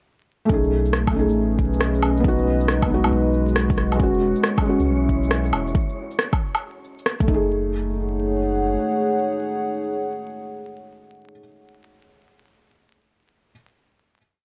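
A dry, gritty recording dusted with vinyl crackle and a light digital ambience frames this short, melancholic future garage piece, where a muffled two-step electronic kick and an overdriven, skittering shuffle of shaker, rim click and woodblock drive a swung groove until about 7.5 seconds. Beneath them, a round sine sub bass glides through long notes while a felt-muted upright piano, soft and intimate with audible action noise, plays rootless held chords with syncopated pushes through tape echo; the piano, bass and a detuned, chorused analog pad all pump against the kick. The moody pad's slowly shifting chords carry on into a final held chord, and a breathy, wind-like tuned noise briefly sighs a high note in the background around 4.3 seconds, lending the whole a wistful air.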